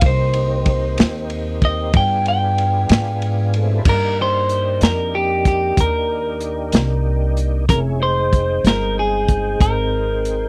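Set in a slow 12/8 at 63 BPM, this smoky, brooding C minor blues excerpt puts a crunchy, saturated breakbeat kit with dark cymbals and a tight kick up front beside a woody, thumpy pizzicato upright bass, while a twangy, slightly broken-up electric guitar takes a clean solo through the first 3.9 seconds over a smooth tonewheel organ with key click and slow rotary speaker, as the chords move from Cm7 and G7b9 to Fm7 in a dry, close 1970s-style studio sound.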